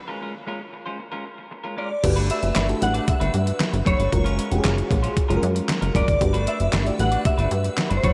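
Early-eighties boogie funk at 115 BPM in a straight 4/4, feel-good and smooth, cut from a longer piece and bathed in a huge, dreamy ambient reverb. It opens on a break where a clean, compressed electric guitar picks out its riff over a Bbm7/Ab chord, joined at 1.8 seconds by a shimmering FM bell melody with ensemble chorus and tremolo, bright and full-bodied with a long ringing release. At 2.0 seconds the groove arrives: a punchy, plucky analog bass sits up front, while a detuned 8-bit drum machine hits with a thumpy kick, fat overdriven snare, handclaps, hi-hat and crash, re-recorded in a small room for a sampler-style grit. An FM electric piano layered with a soft pad fills in lush, mellow chords through chorus and phaser, moving from Gmaj9 to F#maj9 and back. Very quiet, damped congas with a vintage, band-limited tone slip in from 2.6 seconds, adding a soft-handed acoustic touch beneath the glossy synths.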